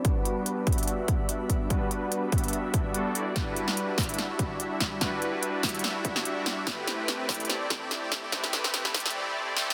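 Future bass with a euphoric, lush half-time feel, this short cut from a longer piece is one continuous build-up, with a filter sweep running across a smooth, detuned supersaw riff that pumps against the sidechain, trails into digital delay and moves through Gmaj7, Em9 and Am9. Up front, a punchy layered electronic kick and a big-room dance kit with crisp hats and a punchy snare drive it, the kit moving into a drum fill from 3.4 seconds while the kick drops out at 9.0 seconds. A shimmering wet reverb and a dense, heavily limited master give the whole a glossy sheen.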